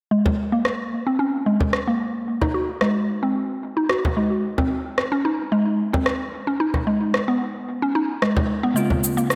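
A dreamy mix soaked in lush hall reverb frames this brief, meditative slice of organic downtempo, cut from a longer piece. A woody, round mallet-like synth pluck with a warbling vintage chorus and analog delay spins arpeggios under a filter sweep, while a deep, close frame drum struck with hard hands and a layered electronic rim click with cabasa keep a straight pulse up front. At 8.7 seconds, a bright, bell-like tine electric piano with its own analog delay enters as the chords settle onto Bbm9.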